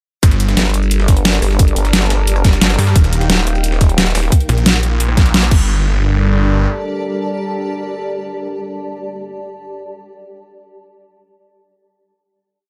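Dark technical drum and bass at 176 BPM in G minor, tense and aggressive, where a drop running from 0.2 to 5.7 seconds sets an overdriven, up-front electronic kick and a tight dubstep kit of deep snare, rim, bright hats and crash over a gritty, tape-warm looped breakbeat kept in the background, while a snarling, detuned sawtooth bass and a nasal, vowel-sweep wobble bass with changing wobble speed growl through Gm and Ebadd9 beneath a bright, sweeping resonant pad and a blurred granular cloud pad, both pumping with sidechain, that sustain through the final note until 9.2 seconds in a dry sound.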